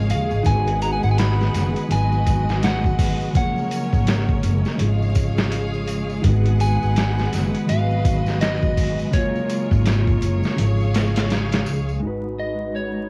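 A swung, muffled sampler-style drum kit with a thumpy kick sits up front beside a woody pizzicato upright bass, anchoring this hypnotic, cinematic trip hop excerpt, where a slightly broken-up electric slide guitar carries the melody over a dark, tremolo-laden clean electric guitar, intense bowed studio strings roughened by 12-bit sampler grit, a faint breathy wind-like tuned noise texture and a bright tambourine in the background, all steeped in cassette tape character and vinyl crackle, with a filter sweep on the strings arriving at 12.0 s.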